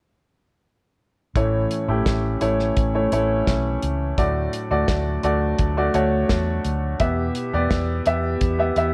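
Heard through worn, warbling cassette tape with a light reverb and a small-room ambience, this bittersweet yet driving piano-driven pop fragment is cut from a longer piece, with every part entering together at 1.4 s. A clear, open concert grand piano with deep bass sits up front as the accompaniment, joined by a dry, damped 70s drum kit of hi-hat, tight kick and medium-tuned snare, also up front. A dark, round and punchy foam-muted fingered electric bass anchors the low end, while a warm woodwind section with vibrato and a smooth top holds classical-style sustained chords in the background.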